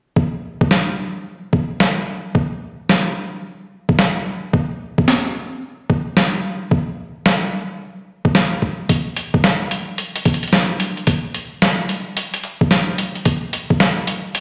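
A thumpy, pitched-down electronic kick with a high-pass filter opens this gritty, swaggering glitch hop excerpt at 0.2 seconds, joined at 0.7 seconds by a compressed, tape-warm boom bap sampler-style kit of hi-hat and medium-tuned snare, both sitting up front at 110 BPM with a 64% swing on sixteenths and ringing through a stone-room reverb as if played on a big sound system in a bare room.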